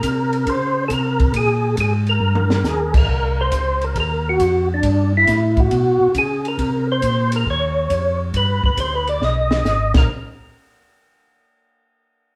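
A percussive, round tonewheel organ carries a bluesy, soulful melody through this swung soul jazz organ trio excerpt at 137 BPM in Bb dorian, its clean third-harmonic click colored by chorus vibrato and a slow rotary speaker, while a second, lightly overdriven organ supplies a mellow, dark bass line and a compact cocktail kit with a high-tuned snare and punchy kick adds drum fills at 2.2 and 9.2 seconds, all sharing a live stone room's reverb.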